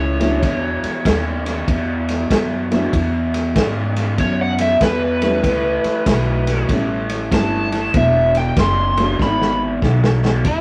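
Heard through a rough rehearsal-room recording with moderate stone-room reverb, this gritty, soulful electric blues shuffle at 96 BPM in 4/4 swings its eighths, moving from E7 to A7 and back in a passage cut from a longer piece. An overdriven slide guitar played with fingerpicks takes the solo with slapback echo over a raw garage guitar riff carrying spring reverb. A growly pizzicato upright bass with steel strings and a muffled, lo-fi vintage drum kit with a tight kick and rolled-off top play underneath, while a dark, slightly detuned upright piano with a boxy tone and short sustain accompanies until 9.2 s, when the drums begin a fill that runs to 10.5 s.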